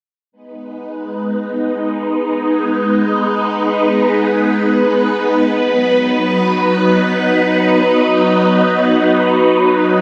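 Ambient, sequencer-driven space music in free time and G# minor, hypnotic and mysterious, this excerpt opens on swirling, vintage sawtooth string-machine chords, bright and up front with ensemble chorus and phaser, moving from G#m to B at 5.6 seconds, while a very quiet, resonant, bubbling stepped-filter texture with chorus joins at 4.9 seconds, all soaked in a dreamy plate reverb.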